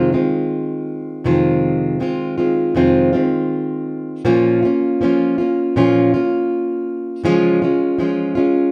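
A fingerpicked, plugged-in jumbo steel-string acoustic guitar carries this brief wistful, tender pop fragment alone, its warm, woody, full-bodied tone and old strings sitting up front. At a slow 80 BPM in a straight 4/4, it moves through Fm7, Bbm and Db in F minor, tuned to A4 = 441 Hz. The room adds a moderate, large studio reverb with the natural feel of a live take.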